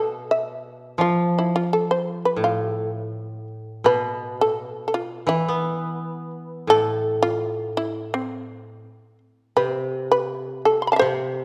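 This is Japanese traditional chamber music, a short cut from a longer piece, with a solitary, austere mood. It moves at 84 BPM in 2/4 with a rubato feel, set in A hirajoshi and tuned to A4 = 439 Hz. The plectrum-plucked, fretless shamisen carries the melody up front from C4 to C6, its tone percussive and buzzing. Beneath it, the koto, played with fingerpicks, gives a woody, dry accompaniment in the low register from A2 to B3, also placed up front. Both parts play throughout the 11.4 seconds, in a concert hall with a wet reverb, and the music shifts into a new section at 3.9 seconds.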